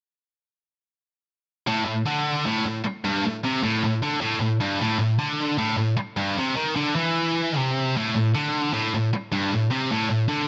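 A scooped, high-gain electric guitar carries this short rock passage alone, playing from 1.7 to 10.5 seconds in a heavy, menacing mood. Its distorted tone is bright and picked, double-tracked and placed up front, and it stays in a low register. The metre is a straight four-four. A light digital ambience surrounds the guitar, and the top end is rolled off above 7.8 kHz. The passage is cut from a longer piece.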